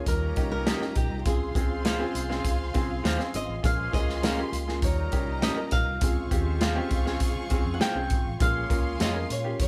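A fingerpicked flamenco guitar carries the melody over a punchy, up-front country drum kit in this joyful, uplifting excerpt of 1960s-style uptempo soul at 101 BPM in Db lydian, where a lush, bowed violin section and a vintage pop-style horn section with octave doubling add second lines, a woody, slightly detuned upright piano and a foam-muted, round electric bass hold down the Eb7, Dbmaj7 and Bbm7 changes, a mellow, flute-like tonewheel organ with slow rotary speaker and chorus vibrato sustains chords in the background, and a dark, slightly broken-up electric guitar through a small old amp adds picked stabs from 0.7 s, all played live in one room with moderate studio reverb.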